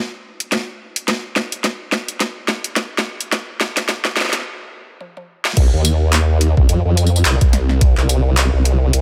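Swung sixteenths at 107 BPM in 4/4 drive this playful, gritty glitch hop clip in C minor, where an overdriven electronic kit of cracking snare, bright hi-hats, handclaps, tambourine, toms and crash rolls through a build-up of fills alongside a thumpy, sampler-style kick that sounds re-recorded in a small room. After a brief stop, the drop lands at 5.6 seconds as an up-front formant-sweep wobble bass enters between C2 and F2, its detuned sawtooth tone saturated, compressed and thickened with chorus. A high-pass-filtered digital ambience surrounds the parts, and the clip is cut from a longer piece.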